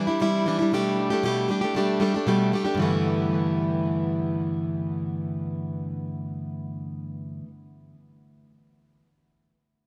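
A picked, plugged-in steel-string acoustic guitar sits up front, its warm tone touched with finger squeak and a tape echo as it plays accompaniment from G2 to G4 across the full 7.5 seconds. This carefree, heartfelt pop excerpt moves in a straight 4/4 through Cadd9 and Gadd9/B before settling on G69 at 2.8 seconds, where a new section begins. An echo chamber's moderate reverb gives the echo-heavy mix a roomy, lingering sheen.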